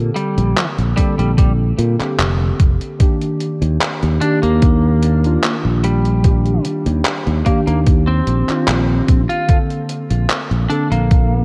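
A thumpy, overdriven electronic kick drum sits up front from 1.0 seconds, anchoring this woozy, nostalgic vaporwave excerpt at 74 BPM in a straight 4/4, with a growly, bright fingered electric bass close beside it and an overdriven, detuned 8-bit drum machine adding handclaps and hi-hat through gated reverb. Warbling lo-fi synth keys, dark and detuned with lush chorus and a filter sweep, lay down Bbmaj9 and Ebmaj7 chords, while a twangy, slightly broken-up lead guitar carries the melody through tape echo. Light reverb and a cassette-tape finish give the whole piece a hazy, worn sheen.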